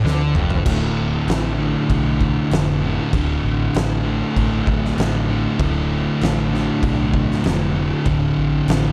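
A dark production sits in light studio reverb, giving this brooding, sludgy stoner and doom metal excerpt a heavy, murky weight. At 97 BPM in straight 4/4 and D minor, it opens with a drum fill over an F5 chord before settling onto D5 at 0.7 seconds for the rest of the passage. Two thick fuzz guitars play picked, distorted riffs in the D2 to D3 range, sitting in the background of the mix. A fingered electric bass, amped with overdrive and foam-muted, holds down the low end from D1 to D2. Up front is an oversized, low-tuned acoustic drum kit with a boomy kick, fat snare, toms and dark crash cymbals, its big, pumping room sound saturated and gritty.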